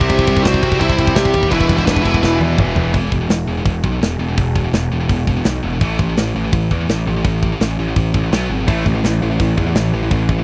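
A dark, distorted lead guitar carries the melody up front with a slapback echo, joined by a second lead line further back in a higher register, and both stop at 2.4 seconds. This excerpt of heavy, aggressive metal moves at 167 BPM in E minor, opening over C and Em chords before a drum fill leads into a second section built on E5, A5 and B5 power chords from 2.9 seconds. A scooped, bright high-gain guitar plays the riff throughout, while a heavier distorted guitar sits in the background, dropping out after the opening and returning at 8.7 seconds. A very quiet, double-tracked cranked stack guitar adds an overdriven riff layer during the first section only. Underneath, a growly fuzz bass sits prominently alongside a tight acoustic kit with a tight kick and medium-tuned snare, working across hi-hat, ride and toms. The sound is dry and close, in the manner of a 1970s studio recording.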